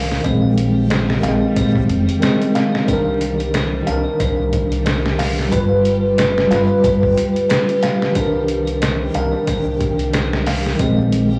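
A mellow tine electric piano sits up front through this hypnotic, cinematic trip hop excerpt, its chords shimmering with harmonic tremolo, tape echo and a layer of vintage 12-bit sampler grit. At 91 BPM in 4/4 with a swung sixteenth-note feel, the C minor harmony moves through Bb9sus4, Cm9, G7 and back to Cm9 before returning to Bb9sus4 near the end. A delicate, tinkling music box spins arpeggios above, trailed by its own tape echo, while a woody pizzicato upright bass holds down the low end. The sampler-style drum kit is compressed, pitched down and gritty, with a thumpy kick, a medium-tuned snare and hi-hat, sounding re-recorded in a small room and placed up front. From 0.5 seconds a reversed, granular texture swells dreamily in the background, detuned and bright in its built-in reverb. The whole mix has a blown-out, overdriven character dusted with vinyl crackle and a light small-room reverb.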